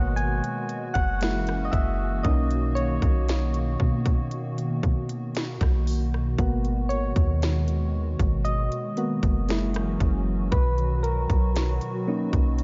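A dreamy, smooth contemporary R&B fragment of about 12.6 seconds floats on round, warbling electric-piano-like synth keys soloing with chorus over a hollow, flute-like pad held in chords, a deep, boomy 808-style bass and an up-front trap kit with hard-clipped kick, sharp snare and crisp hats entering at 0.2 s, all cycling through G#m7, F#7 and Bmaj7 in light reverb and digital ambience.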